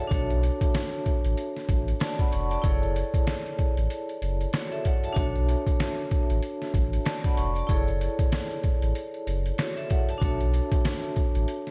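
Tough and dark, this swung boom-bap hip hop fragment pairs a ringing, metallic hard-mallet vibraphone with slow motor vibrato and filtering, sitting up front over alternating Bm9 and F#m7 chords, with a deep, sustained sine-and-triangle sub bass doubled at the octave and a gritty, pitched-down, compressed sampler-style drum kit with a thumpy kick and a medium-tuned snare re-recorded in a large room, all under light reverb and a bed of vinyl crackle.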